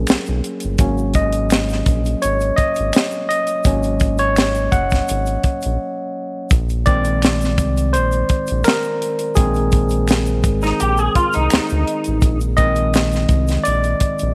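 A barky, bright tine electric piano carries this soulful, introspective neo-soul excerpt at 84 BPM, with a brief break at 5.8 seconds, over a round, dark analog bass with transformer saturation, a tight, dry funk kit with a high-tuned snare, finger snaps and tube shaker in the background, a slightly broken-up lo-fi electric guitar with ensemble chorus appearing from 10.6 to 12.4 seconds, and chords moving from G#9sus4 to A#9sus4 in a small room with light reverb.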